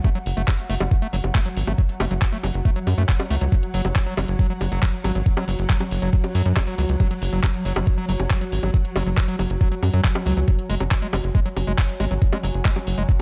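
A swarming, detuned drone and a dark, warbling pad with chorus sit in the background from the start of this intense, hypnotic psychedelic trance passage, both pumping, while a squelchy, distorted acid bass riff with tape echo plays over a knocking, up-front electronic kick and a garage kit of bongos, handclaps and metallic hats, before a tight, punchy sequencer bass joins at 0.3 s in a dry, close mix.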